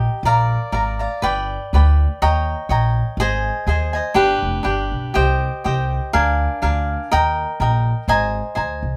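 A crisp, picked cavaquinho and a woody, thumpy pizzicato upright bass on gut strings play up front together from the start, carrying a romantic, festive mariachi feel in 2/4 at 122 BPM with a light swing, moving through chords from Bb and G to Eb7, Cm and a closing Abadd9, heard with light reverb as a band playing live in one room in this 9-second portion cut from a longer piece.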